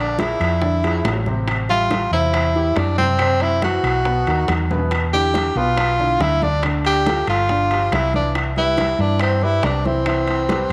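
A straight 4/4 pulse at 140 BPM drives this lively, sophisticated Afro-Cuban jazz passage in C major, where a breathy, up-front tenor saxophone with subtone, vibrato and scooped notes carries the melody through tape echo, an intimate grand piano with audible action noise plays the accompaniment over chords such as Bb7#11, Am7 and Cmaj7#11, a dark, punchy hollow-body electric bass holds down the low end, and soft-handed bongos, bright, compressed congas, ringing, distant timbales and woody claves enter just after the start, with a drum fill at 4.7 s and the whole mix set in a moderate echo-chamber reverb.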